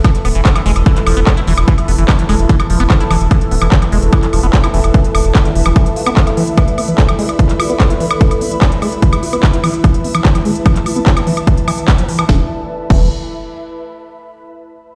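An overdriven, heavy electronic kick sits up front in a straight pulse, layered with a techno kit of cracking snare, smooth hi-hats, handclaps, woodblock and crash cymbal, giving this psychedelic trance cut a driving, intense feel. Beneath it, a round, deep analog bass with a fast attack enters at 0.2 seconds, drops out at 5.7 seconds and returns at 12.3 seconds for the short closing section. A squelchy, resonant liquid acid bass riff runs from the start to 13.1 seconds, its filter sweeping until 12.3 seconds, coloured by phaser, sidechain pumping and dub echo. In the background, a drone of sustained sawtooth chords carries moving overtones under its own filter sweep, with chorus, phaser and pumping. Above it all floats an ethereal, airy pad of detuned unison voices with ensemble chorus, and the mix sits in a lush hall reverb that suggests a big sound system in a bare room.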